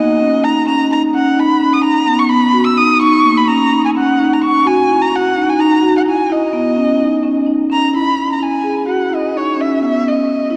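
Restless and urgent, this contemporary instrumental fragment in 7/8 sets a dark, bowed erhu melody, colored by vibrato and portamento, over mellow, round marimba arpeggios played with soft mallets on rosewood bars, both parts up front for the full 10.6 seconds in a vast, echoing cathedral space, with a new section arriving at 7.9 seconds.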